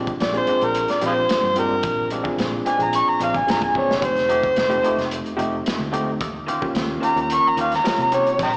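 An up-front, overdriven harmonica carries a laid-back, soulful straight-eighth soul blues melody at 110 BPM in Bb mixolydian, its tone gritty, with light vibrato, scooped notes and tongue slaps over a barky reed electric piano, twangy guitar stabs with slapback and tape echo, a round foam-muted bass and a punchy, dark breakbeat kit with a drum fill at 3.7 seconds, all heard as a live gig through the venue's PA with recital-hall reverb and small-speaker sound in this short cut from a longer piece moving through Bb9, F9 and Eb9.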